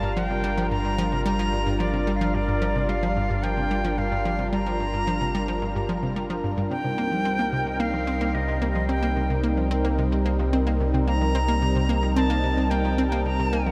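A dreamy, reverb-soaked mix opens this excerpt of ambient, sequencer-driven space music in C minor at 110 BPM, where an airy, evolving sawtooth pad sustains Gm7 then Cm7 chords (shifting at 6.7 s) over a deep sine sub bass with tube saturation, while a round, detuned analog pluck riff with chorus and delay circles beneath a pure, reedy concert flute melody with vibrato, all drifting in an expansive, mysterious haze.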